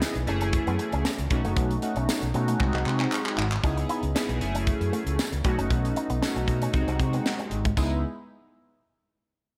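Early-eighties boogie funk with a funky, late-night mood, built on a tight funk drum kit with a high-tuned snare and gated reverb, an overdriven, punchy fingered electric bass entering at 0.2 seconds, a glossy chorused polysynth up front, an electric guitar riff through an envelope filter and lush chorus in the background, a very quiet French horn section holding sustained chords with light vibrato, and a jingly tambourine, with a drum fill from 2.6 to 3.6 seconds in this short cut from a longer piece.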